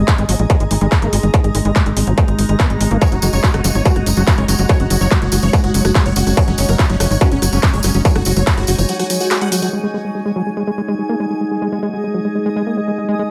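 A distorted, overdriven electronic kick drum sits up front in this psychedelic trance excerpt at 143 BPM, joined by an overdriven techno kit of handclaps, hi-hat and rim click in a small room ambience. Beneath it a tight, punchy sequencer bass with a ring-modulated, plucky edge drives the low end, while a squelchy, gritty acid bass riff with dub echo and sidechain pumping churns in the background. An overtone-sweeping drone holds sustained chords through chorus and phaser, and a cloudy, evolving granular pad shimmers high above with its own reverb. At 3.0 seconds a huge, thick supersaw melody arrives, compressed and pumping with phaser and digital delay, alongside a jingly acoustic tambourine, both lasting until 9.7 seconds. From 9.7 seconds the drums and melody drop away and a filter sweep moves across the drone, leaving the pad, drone and acid bass to carry the psychedelic, driving mood over G#5 harmony.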